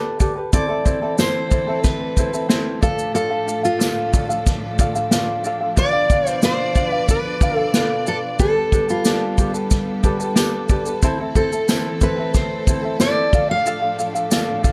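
A thumb-plucked ukulele opens this reflective, tender acoustic pop excerpt in A minor at 91 BPM, joined at 0.2 seconds by an unplugged drum kit with a punchy kick, medium-tuned snare and shaker played with bundle sticks, its roomy sound set up front. From 0.5 seconds a full-bodied fingerpicked dreadnought guitar carries the melody through a tape echo while a bowed string section holds soft-attack sul tasto chords with vibrato and a smooth top, and a jingly tambourine sits in the background from 1.2 seconds. The harmony moves through Am, Dm/A, Bdim and Gadd9 in a dry mix.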